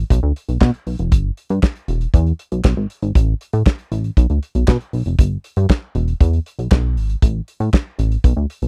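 Late-night and danceable, this short excerpt of early-eighties boogie funk moves at 118 BPM in a straight 4/4, with a glossy, detuned, chorused synth bass ranging from E1 to B2 sitting up front beside a damped, dry 70s drum kit of tight kick, medium-tuned snare, hi-hat and handclaps with a rolled-off top, all captured in a close, 1970s-style studio sound with little reverb.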